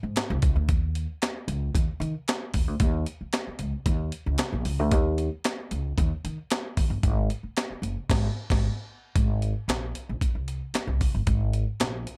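The recording is dry and close, with little reverb, and both instruments sit up front in a short funk fragment cut from a longer piece. An acoustic upright bass, played pizzicato on steel strings, carries the low end with a woody, dark and growly tone from the very start. A breakbeat drum kit enters at 0.2 seconds with a sampler-style, compressed and gritty character: a thumpy kick, a medium-tuned snare, hi-hat, handclaps and crash cymbal, its sound re-recorded in a large room. The mood is funky and strutting, with a straight feel. A band accent lands at 8.1 seconds, leading into a new section at 9.2 seconds that carries the groove to the end.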